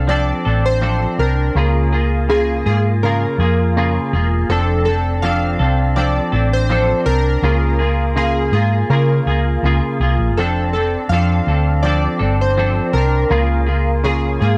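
A round, dark hollow-body short-scale electric bass sits up front in this dreamy, hazy bedroom-pop excerpt, fingered and amped in a low register from E1 to Db3. Over it, a semi-hollow electric guitar plays a clean, compressed, picked accompaniment, its ensemble chorus and warbly pitch drift adding to the woozy haze. The melody belongs to glossy retro synth keys, a detuned blend of pulse and sawtooth waves with pulse-width modulation, a filter sweep and analog chorus, bright with a fast attack and decaying notes between Ab4 and F5. At 82 BPM in 4/4 with a light 16th-note swing of 55%, the indie-pop groove drifts between F6 and Db6 chords, the change to Db6 arriving at 1.6 seconds and the return to F6 at 4.5 seconds. All three parts play throughout the 14.6 seconds, tuned to A4 = 438 Hz and set in moderate studio reverb with a dark, warm production.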